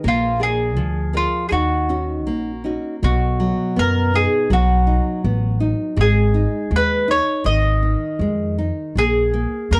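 A bright, fingerpicked classical nylon-string guitar and a woody, thumpy pizzicato upright bass open this longing, passionate fado-style ballad in Eb harmonic minor, moving with a rubato feel at 81 BPM in 2/4, and at 0.1 seconds a round, picked mandolin with double strings takes the melody, all three sitting up front in a dry, close 1970s-style studio sound with small room reverb, in a fragment cut from a longer piece.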